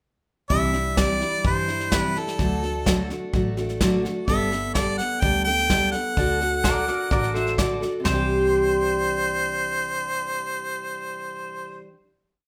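A brushed train-beat groove in straight 4/4 drives this short, down-home and nostalgic honky-tonk country piece, where a clear, close-miked harmonica carries a scooped, lightly vibratoed motif melody up front over bright eighth-note strumming on a dreadnought acoustic guitar and a dark, foam-muted electric bass playing two-beat root and fifth, while the airy brush kit drops out at 8.2 seconds and a compressed pedal steel, entering at 6.6 seconds, adds volume swells and answering blues licks in the background as the band settles onto a final Cadd9 chord in a moderate large-studio reverb.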